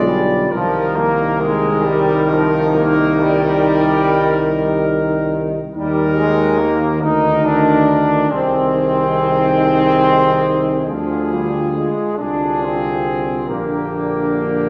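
A slow, hymn-like brass band passage opens with the whole ensemble sounding together from the first moment, moving at about 46 beats per minute in dotted quarters within a flowing 12/8 and shaped with a rubato feel. A dark trumpet section carries the lyrical melody, its smooth top set somewhat back in the balance, while a French horn section with soft attacks and light vibrato sings a second line from a distant, background position. Beneath them, a mellow trombone section stands up front as the main accompaniment, joined by a single close-miked solo trombone in its lower range and a tuba holding the bass with a rounded, gentle tone. The harmony drifts through rich chords such as Cm7, Ab/C and Ddim before settling on Gm/Bb near 13.5 seconds. A generous scoring-stage reverb places the listener further back in the hall, lending the warm, devotional excerpt a spacious, glowing sound before it is cut off at 14.7 seconds.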